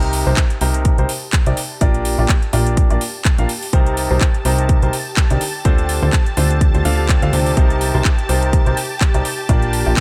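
A clear baby grand piano riff drives this bittersweet, energetic piano house passage at 125 BPM in C dorian. It rides over silky, detuned analog string pad chords and a plucky sawtooth bass with a funky filter pluck, while a house kit adds handclaps and metallic hi-hats under a 56% swing on the 16ths. A punchy electronic kick arrives at 0.4 s and sits up front as the most prominent part. Sidechain pumping breathes through the pad, piano and bass, the piano carries a delay, and ensemble chorus and vibrato shimmer on the bright pad. The harmony moves through Cm7, Bb6 and Dm7 in a dry, close mix with little reverb, and the passage is cut from a longer piece.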